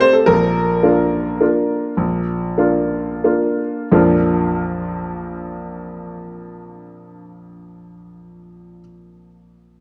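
A clear, up-front baby grand piano plays a sparkling, graceful classical waltz alone in Bb major, its short-sustained, natural tone set in a wet recital hall and heard through worn, warbly old cassette tape, with a rubato 3/4 that slows over the first 3.9 seconds and moves between 85 and 114 BPM in this excerpt cut from a longer piece.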